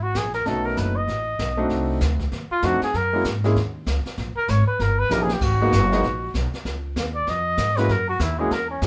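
A breathy, mellow trumpet takes the solo through this short excerpt of small-group swing and bop jazz, its light vibrato and scooped notes sitting up front yet carrying a roomy, distant air. The mood is playful and relaxed at a brisk 194 BPM in 4/4, with a gentle swing on the eighth notes in F# mixolydian. A woody, pizzicato upright bass on steel strings holds the low end up front, while a concert grand piano with deep bass, long sustain and audible action noise supplies intimate accompaniment from 0.5 seconds. The brushed drum kit sits further back in a small room, its dark cymbals and boomy kick softened by a rolled-off top, and it adds a short fill at 5.1 seconds. The harmony moves through rich chords such as B9, Cdim7, G#madd9 and D#7b9 before settling on F#7, all wrapped in a moderate studio reverb.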